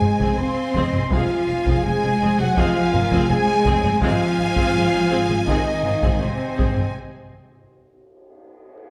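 Taiko drums struck with hard sticks drive this epic, dramatic orchestral film cue, a short passage cut from a longer piece, their acoustic, small-room thump the loudest element in the mix. Above them a lush symphonic violin section carries the melody on a focused high A-flat with vibrato. A distant, soft-attacked studio violin section and a hollow, mellow flute group trace second lines in the background, while violas supply smooth, even accompaniment. French horns hold soft-attacked sustained chords, a dark trumpet section with a smooth top punches out stabs, and very quiet, clear trombones add sustained chords between 1.1 and 5.7 seconds. Close cellos and woody double basses anchor the low end as the harmony moves from F minor to A-flat major, all bathed in a wet scoring-stage reverb, before the ensemble falls away at 7.0 seconds into a brief break.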